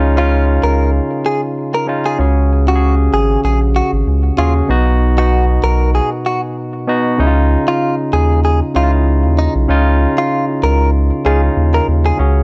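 An afrobeats groove in 4/4 at 96 BPM rolls along with a light 16th-note swing, setting a romantic, breezy mood in Db mixolydian in this short cut from a longer piece. A deep, thick saturated sub bass sits up front from the start, its fast attack and sustained notes giving the low end a solid, weighty presence. Alongside it, a bright, barky tine electric piano plays the accompaniment with a clean, direct, forward tone, moving through Dbadd9, Gbsus2 and Cb before returning to Dbadd9 at 7.2 seconds as the second section begins. A clean electric guitar, recorded direct and compressed, carries the picked melody from 0.2 seconds, sitting a little further back with a warm glow. The sound is dry and gritty, with little reverb, giving the whole clip a close, hardware-tinged feel.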